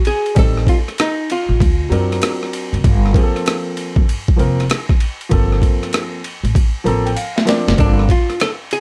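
Dark, lightly reverberant production frames this mellow, smoky jazz-hop fragment at 97 BPM with a swung sixteenth-note feel, cut from a longer piece. A gritty, overdriven sampler-style boom bap kit with a thumpy kick, hi-hat, ride, rim click and snare drives the groove, while a woody pizzicato upright bass and a polished, present grand piano enter at 0.4 seconds over minor-flavoured jazz chords. A clean, hollow-body archtop guitar carries the picked melody through analog delay, dropping out after the opening and returning at 7.8 seconds once the drums and piano share a fill from 6.5 seconds.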